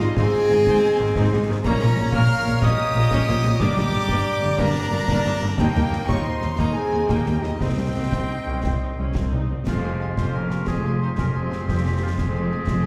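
In a 12/8 at 120 BPM in F minor, this determined, adventurous heroic film-score cue, cut from a longer piece, sets a focused, vibrato-laden studio violin melody against a second-line weave of airy flute, distant roomy oboe, punchy clarinet and a very quiet lush violin section, over smooth viola accompaniment, mellow French horn chords, clear trumpet stabs, smooth cello and woody double bass lines and dry concert snare, bass drum and dark clash cymbals, all bathed in a wet concert-hall reverb heard from further back, with the chords moving from Ab through Bbm, Gm, Eb and Cm before settling on Fmadd9 at 9.7 seconds.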